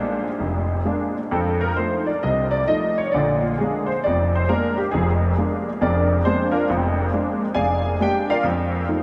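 Swinging and playful, this nine-second excerpt of solo jazz piano moves at 134 BPM in 4/4 with a swung, rubato feel, circling between Bb7 and F7. The concert grand sits up front with an intimate, natural tone, deep bass, long sustain and audible action noise, colored by analog chorus and analog delay. A huge ambient reverb with an 8.0-second tail soaks the mix in a dreamy haze.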